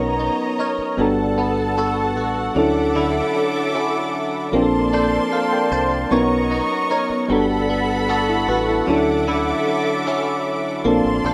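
A soft, electric-piano-like synth sits up front in this tender, romantic R&B excerpt, its mellow, rounded tone shimmering with chorus as it carries the accompaniment and slips in a brief fill between 4.5 and 6.1 seconds. Beneath it, a muted studio string section holds lush, veiled chords with vibrato, close and intimate in the mix. A clean, direct-recorded electric guitar picks bright, twangy arpeggios, its scooped, compressed sound thickened by ensemble chorus and tape echo. A deep dub bass, played with the fingers, anchors the low end with a dark, round tone. At a relaxed 76 BPM in straight 4/4, the harmony drifts through lush major-ninth chords such as Bmaj9, Gmaj9, Dmaj9 and A#maj9, all set in a small, wet room with the loose feel of a rough home demo.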